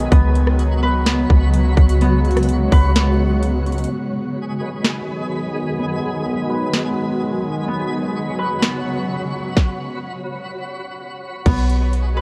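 A half-time 4/4 groove at 127 BPM in B major carries this floating, blissful atmospheric cloud-rap excerpt, with an overdriven trap kit of hard-clipped kick, sharp snare, metallic hats, rim clicks and crash up front, a deep, round 808-style bass that drops out at 3.9 s and returns at 11.5 s, a blurred, evolving granular cloud pad pumping under sidechain, fingerpicked Celtic harp arpeggios ringing through delay, and a sparkling octave-up granular shimmer, set over a worn, warbling cassette-tape ambience, with a filter sweep beginning at 3.9 s and a stop at 9.6 s.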